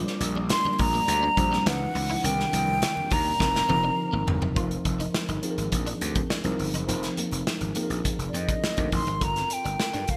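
A breathy, hollow metal flute carries the melody up front with vibrato and a soft attack, dropping out at 4.3 seconds and returning at 8.3 seconds in this upbeat, breezy slice of polished 1980s jazz-funk pop. Beneath it, a growly, overdriven slap bass punches hard alongside a modern studio drum kit whose punchy kick, medium-tuned snare, hi-hat and toms ring out with gated reverb, and a drum fill leads into the second section. A worn, slightly out-of-tune tine electric piano supplies mellow accompaniment with subtle chorus, while a very quiet clean electric guitar picks a compressed riff. A silky string machine with phaser and ensemble chorus holds soft sustained chords under the opening until 4.6 seconds, and close, dry congas played with hard hands add faint ringing percussion. The harmony drifts through rich extended chords, and the whole mix has a bright 1980s digital sheen with light small-room ambience.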